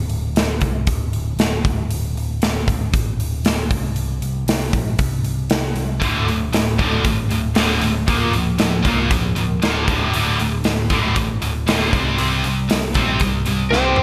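A 1980s-style digital production with a moderate plate reverb frames this driving, heavy hard rock passage, cut from a longer piece. It opens on a growly, overdriven picked electric bass, joined almost at once by a big acoustic rock kit with a punchy kick, a medium-tuned snare, hi-hat and toms, set up front in a big room and soaked in gated reverb. At 6.0 seconds two picked riff guitars come in low together: a bright, cranked stack guitar with overdrive and ensemble chorus, and a scooped, high-gain distorted guitar pushed up front. The harmony moves between power chords and a Bb over D, with a brief chordless stretch before the riff arrives. At 13.7 seconds, under a drum fill, a dark, slightly broken-up lead guitar with analog chorus and a compressed, up-front tone strikes a high note, while an octave-fuzz lead guitar adds a second line just below it.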